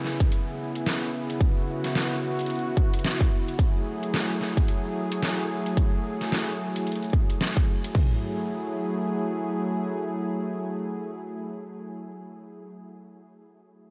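A swung 110 BPM glitch hop groove in 4/4 opens this excerpt, with a dubstep drum kit split into two layers: hi-hat and a deep snare running from 0.0 to 7.9 s, and a punchy kick, crash cymbal and toms, sitting louder, from 0.2 to 8.1 s, both up front and re-recorded in a large room. Over it, a smooth, detuned sawtooth analog pad with a soft attack holds sustained chords from C#m7 to F#m9 in F# minor, treated with chorus and sidechain pumping and lasting until 12.7 s, well after the drums stop. A huge, dreamy ambient reverb soaks the mix, giving the swaggering, funky mood a hazy glow.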